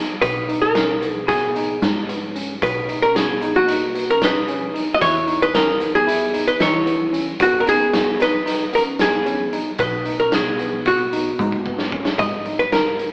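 Bright and intricate, this progressive instrumental excerpt moves at 226 BPM in eighths through a 9/8 meter with a straight feel, tuned to A4 = 438 Hz. A clean, hollow-body jazz guitar carries the melody up front with a picked, compressed tone, while a vibraphone played with hard mallets, motor off, adds a metallic, ringing second line beneath it. A bell-like tine electric piano opens alone at 0.0 s with arpeggios in the background before the rest of the group enters at 0.2 s. A plucky analog bass with a nasal, funky filter pluck and moving notch anchors the low end, and a raw garage drum kit with a punchy kick, medium-tuned snare and hi-hat sounds gritty and saturated with a rolled-off top, joined by a very quiet, grainy egg shaker. The harmony cycles from G#m7 through Bmaj7 and Emaj7 back to G#m7, a drum fill arrives at 11.4 s, and the whole band, playing live in one large reverberant room, comes across with an AM radio quality and a faint mains hum.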